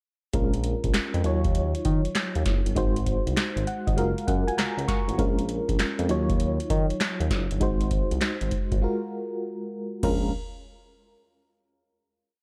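A dry, up-front mix carries this bouncy, confident R&B piece in new jack swing style, in Bb minor at 99 BPM. It rides a hard-swung, booming analog drum machine with a deep kick, a crisp snare layered with handclaps, metallic hats, toms and crash, with a short room on the snare, clap and hats. A smooth, nasal, detuned synth bass plays a swung synth-funk line with chromatic approach notes, while a dark, full-bodied FM electric piano with tremolo holds drop2-voiced chords through a Bbm7, Ebm9, Ab7, Gbmaj9 cycle, adding a short fill at 3.4 seconds before a break at 8.8 seconds leads to a final Bbm7 chord at 10.0 seconds.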